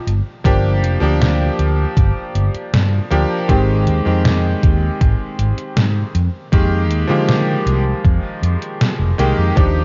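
At a straight 79 BPM in 4/4, a thumpy, overdriven electronic kick and a detuned 8-bit drum machine with a fat, up-front snare and hi-hat, treated with gated reverb and re-recorded in a small room, carry this dreamy, woozy vaporwave fragment, where a round, dark fretless electric bass sits beneath a clangy, cutting electric grand piano wrapped in lush chorus and analog delay as the chords move from Gm7 to Abmaj7 at 3.5 seconds and Fm11 at 6.1 seconds, all under a cassette-tape haze that rolls off everything above 7.5 kHz.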